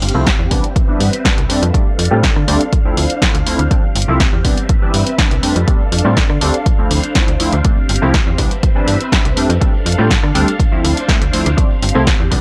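A dry, gritty cassette-tape sound frames this feel-good, funky filtered disco house excerpt at 122 BPM in G mixolydian, where a filter sweep runs across the whole passage as a snappy, metallic-attack FM bass, a punchy analog drum machine with hi-hat, rim click and snare, an up-front tape-warm electronic kick from 0.3 seconds, a detuned sawtooth polysynth comp with chorus and phaser, a swirling phased string machine pumping under sidechain, and a very quiet tambourine cycle through G7sus4, Cmaj7, F6 and Dm7.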